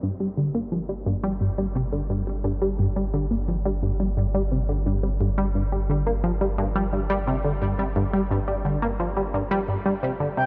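A tight, driving sequenced synth riff opens this cosmic, mysterious piece of ambient space music, its sawtooth tone plucked through a filter with a fast attack and placed up front, dressed in chorus and tape echo. Beneath it, a round analog bass sits deep and dark in the low register, its nasal, triangle-and-sine character giving the pulse a warm foundation. The tempo is 87 BPM in a straight 4/4, and the sequenced pattern evolves as it repeats. At 10.4 seconds, a breathy, flute-like synth lead arrives on a single high note, soft in attack, with a noise layer, vibrato and lush chorus. The dark, warm production is bathed in a huge ambient reverb with a long 8.6-second tail, and the passage is cut from a longer piece.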